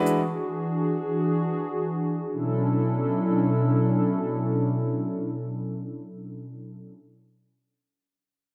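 Floating in free time with a loose, unmetered flow, this short amapiano fragment is cut from a longer piece and carries a soulful, late-night mood in B dorian, tuned to A4 = 442 Hz. A single synth pad holds sustained chords from 0.0 to 7.0 seconds, spanning B2 to A4. Its hollow, flute-like tone has a slightly nasal, detuned edge, softened by a gentle attack and a chorus effect that keeps it mellow and up front. The harmony rests on an E9 chord before shifting to Bm11 at 2.3 seconds, opening into a second, longer passage. Light reverb and the ambience of a small room lend the sound an intimate closeness.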